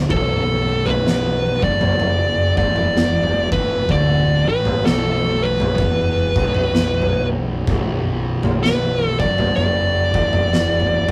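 Heavy and hypnotic, this short stoner and doom metal cut from a longer piece crawls along at 63 BPM in 4/4 with a swung eighth-note feel, sitting on a single B minor chord throughout. An oversized, low-tuned acoustic drum kit of kick, snare and toms sits up front from 0.1 seconds, its boomy kick and fat snare saturated and gritty in a pumping room sound. Beneath it, a double-tracked fuzz guitar grinds out the riff in a low register with a distorted, picked tone, kept in the background. A fingered electric bass anchors the bottom end even lower, growly and punchy with overdrive, also set back in the mix. Over the top, a dark fuzz lead guitar carries the melody in a higher range, picked and up front, while a moderate small-room reverb and rough rehearsal-room quality give the whole recording a raw, live character.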